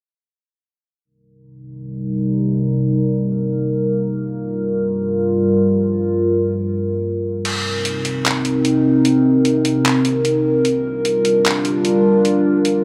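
A dark, lightly reverberant production under a low-pass haze frames this ethereal, spacious cloud-rap hip hop excerpt at 150 BPM in a half-time 4/4 feel in C minor, where a deep, detuned analog pad with chorus and phaser sustains Cm7 and Gm7 chords from 1.8 seconds beneath an opening filter sweep, joined at 7.5 seconds by a gritty, pitched-down, compressed sampler-style trip hop kit of crash cymbal, handclaps and hi-hat.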